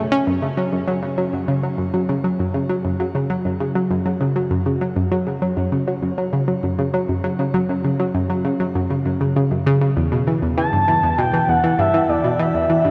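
Expansive and cosmic, this ambient excerpt drifts in a straight 4/4 feel, set in a vast, echoing space with an enormous reverb tail. An analog pluck carries a riff from the start, its round, wave-folded tone built from sawtooth, pulse and triangle waves with a noise layer, fast attack and a decaying filter sweep, roughened by vintage 12-bit sampler grit and spread through chorus, shimmer reverb and analog delay. The harmony rests on an F#5 chord before falling away to a chordless stretch at 10.0 seconds. At 10.6 seconds an expressive portamento lead enters up front with a melody, its smooth, mellow sawtooth voice sustained with vibrato and gliding pitch, bathed in lush chorus, shimmer reverb and analog delay. Both parts carry on to the cut at 12.9 seconds, the lead's sustained glow hovering over the pluck's bright figure.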